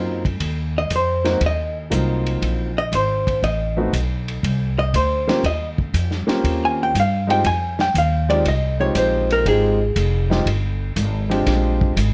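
A clean, dark hollow-body jazz guitar carries the melody up front from 0.8 to 10.4 seconds, its picked, compressed tone set in plate reverb over a sophisticated small-group swing and bop groove at 119 BPM. An intimate grand piano with audible action noise and long sustain comps through Ab13, Adim, Eb13, Fm7 and Bb13 changes, while a woody pizzicato upright bass on steel strings anchors the low end. A muffled, lo-fi vintage drum kit with dark cymbals, a medium-tuned snare and a tight kick swings underneath in a small room, all within a lightly reverberant, dusky production cut from a longer piece.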